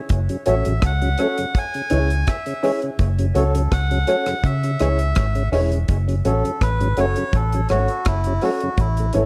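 Roots reggae at 83 BPM in F# minor, serious and laid-back, built on a round, punchy muted electric bass and a dry, tight 70s drum kit with hi-hat and rim click, while a thick, lightly overdriven tonewheel organ with slow rotary speaker and dub echo and boxy baby grand piano stabs fill out the echo-heavy mix, and a reedy, nasal melodica with tape echo carries the melody before taking a solo from 5.9 seconds in this excerpt from a longer piece.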